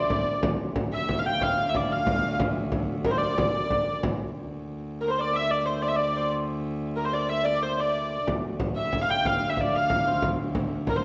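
Mysterious and driving, this medieval dance moves at 122 BPM in a straight 6/8, counted in dotted quarters, and sits in D minor. A dark, nasal hurdy-gurdy carries the melody up front, its wheel-bowed, keyed tone reedy and boxy with an airy bow sound. A Celtic harp plays a fingerpicked second line in the same range, its strings ringing softly beneath the lead. A rich viola da gamba holds a low D drone throughout, its gut-string period tone biting, with light vibrato. A deep, large frame drum sits up front, dropping out at 4.2 seconds and returning at 8.3 seconds. The whole short cut from a longer piece sits in a wet recital hall reverb, giving the ensemble a resonant, spacious glow.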